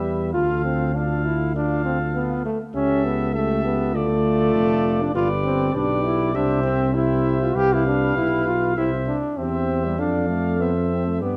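From the opening moment a classical brass quintet plays together at a steady 99 BPM, triumphant and noble in a moderate recital-hall reverb, with a warm, distant trumpet carrying the vibrato-touched melody over a mellow flugelhorn second line in the background, a soft-attack French horn and close-miked trombone filling the accompaniment, and a smooth-topped tuba bass up front beneath chords that move from Dm through G and C to Dm/F.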